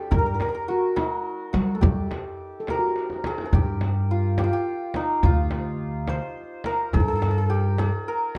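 Longing and soulful, this Persian modal ensemble piece in a straight 6/8 is cut from a longer work. A hammered, shimmering santur carries the melody up front, while a mellow, dark steel pan traces a soft second line until 3.0 s, and a woody pizzicato upright bass anchors the low end. A deep frame drum sits close, a tight tombak plays in the background, and a drum fill at 3.0 s leads into a new section at 3.5 s, all in a detailed, lightly reverberant sound.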